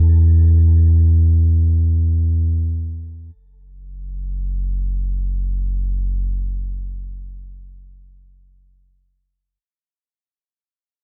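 Dry and close, this ambient fragment in free time rests entirely on a deep, round sub bass with a sine-like tone, a fast attack and long sustained notes between F#1 and E2, warmed by tube saturation. The mood is peaceful and luminous. Cut from a longer piece, it runs under ten seconds and begins fading out at 1.3 seconds.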